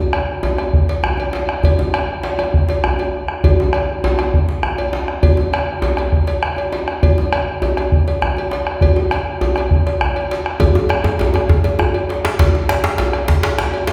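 Heard from further back in a reverberant recital hall, this powerful, driving piece of West African traditional drumming in 12/8 sets a round, up-front bombo and a metallic cowbell alongside a medium-tuned djembe played with soft hands, and a tight, cracking second djembe struck with hard hands joins at 10.6 s as the music moves into a new section.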